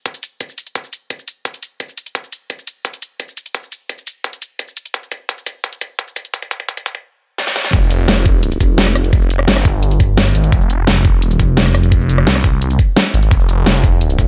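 A straight pulse of knocking electronic kick and a layered drum kit with a huge snare, rim clicks, hi-hat, shaker and crash cymbal opens this tense, dark technical drum and bass excerpt, building up with drum fills from 2.2 to 7.0 seconds and again from 7.4 to 7.7 seconds. At the drop at 7.7 seconds a thick, swirling detuned saw bass arrives up front, saturated and phased with sidechain pumping, sitting low beneath the upfront drums. The mix is dry and close, with little reverb and a dulled top end.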